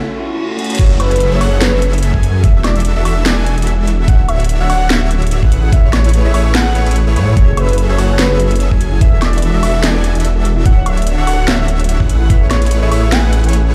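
A half-time future bass groove at 146 BPM in F# minor, swung on the 16ths, opens on a brief break where a bell-like tine electric piano, drenched in phaser and dub echo, rides over a background riser, reverse cymbal and downlifter. A trap kit fill at 0.6 seconds leads into the drop at 0.8 seconds. The drop brings a knocking, up-front electronic kick, the trap kit with sharp snare, metallic hats, crash and woodblock, a thick detuned saw bass, and huge, bright supersaw chords cycling through lush ninth and major-seventh harmonies, with the bass and chords breathing with sidechain pumping. A velvety synth lead with vibrato and portamento carries the melody over soft, airy arpeggios, and a round, tine-like synth pluck joins deep in the mix at 7.4 seconds, giving this dreamy, bittersweet passage a spacious studio reverb.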